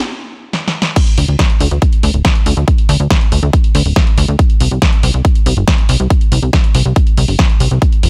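Soaring and euphoric, this uplifting trance excerpt at 140 BPM in 4/4, tuned to A4 = 437 Hz, opens on a brief stop with an analog drum machine fill of snare, hi-hat and crash from 0.5 seconds. The drop lands at 1.0 seconds with an up-front, overdriven layered kick, and at 1.2 seconds a plucky, wave-folded sawtooth bass with fast-attack filter plucks and sidechain pumping starts to move between D1 and D2, all within a digital ambience.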